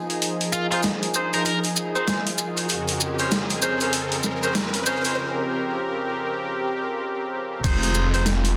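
A warm, detuned analog pad with chorus, tremolo and sidechain pumping opens this playful, swaggering glitch hop excerpt in F minor at 97 BPM, alongside a background riser and a warbling, nostalgic tape-like pad through a build-up and filter sweep over Fm7 and Bbm9/F. A gritty, pitched-down boom bap kit with a high-tuned snare, hi-hat and crash plays up front with grainy maracas, while a biting, overdriven electric guitar lead with 12-bit grit and tape echo flashes briefly and a bright, jazz-style horn section punches stabs through a low-pass filter and tape echo. At 7.6 seconds, after a break, a thumpy overdriven kick and a swirling, thick phased saw bass drop in on F1, all under plate reverb and a dense, heavily limited master.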